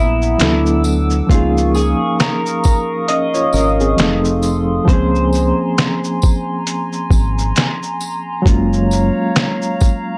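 At 67 BPM in 4/4 with a lazy 16th-note swing, this cosy, dreamy lo-fi hip hop excerpt rides on a sampler-style drum kit that enters at 0.2 seconds, pitched down, muffled and overdriven with 12-bit grit, its thumpy kick and fat snare sitting up front among finger snaps, hi-hat and shaker. A close, jingly tambourine adds a dry shimmer from 0.8 seconds, while a deep, round dub bass, fingered and dark, anchors the low end until 9.1 seconds. A bright, reedy electric piano carries the chords through its built-in speakers with medium tremolo and a cassette-tape haze, moving from D69 and Db69 through F7 and Bbm9/Db to Gbmaj7. Alongside it, a hollow, flute-like pad with a slow attack and long release holds soft sustained chords under chorus. An electric guitar through a small old amp, slightly broken-up and lushly chorused, picks a short melody that drops out at 6.6 seconds, and the whole piece has a dry, gritty hardware character with only a light touch of reverb.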